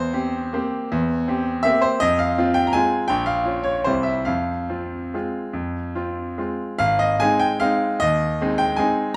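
A dark, warm production places the solo grand piano up front in a moderate recital hall reverb, its brilliant, open tone and short sustain carrying a bittersweet, wistful mood. This classical waltz in 3/4 and F minor moves with a flexible rubato between 138 and 172 BPM, tuned to A4 = 439 Hz, and spans Ab1 to Bb5 as its harmony passes from C7/E through Fm, Bbm and C. At 6.8 seconds the music turns to a new section on Ab before this short fragment of a longer piece breaks off at 9.2 seconds.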